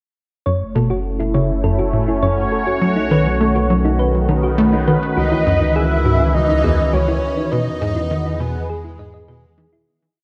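Hypnotic and cosmic, this short ambient piece of sequencer-driven space music moves at 102 BPM in a straight 4/4 in F# dorian, drifting through F#m7, B9, C#m11 and Emaj7 in a moderate plate reverb before fading out from 6.7 seconds. A punchy, saturated sequencer bass drives a repeating 16-step riff with lush chorus and delay, over a round sine sub bass holding the roots, while a bright, resonant pad of detuned sawtooths sustains slowly shifting chords up front and a tine-like FM thumb-piano pluck spins a 12-step arpeggio loop that drifts against the bar. At 5.2 seconds a breathy, flute-like synth lead enters up front with vibrato, ensemble chorus and delay, singing arch-shaped motif phrases.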